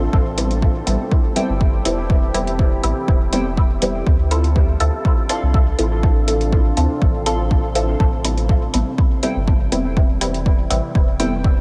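A dark, evolving pad with chorus and its own reverb opens together with a round, soft sub bass, both breathing under sidechain pumping, before an overdriven, up-front kick lands at 0.1 s to set a meditative, hazy dub techno groove at 122 BPM in A minor, moving from Am7 to Dm7 and back. Muted, detuned chord stabs arrive at 0.4 s with a phaser and dub echo alongside metallic analog hi-hats, and from 1.4 s warbling, lo-fi synth keys drift nostalgically in the background through chorus and echo. A huge ambient reverb soaks the dreamy mix in this brief cut from a longer piece.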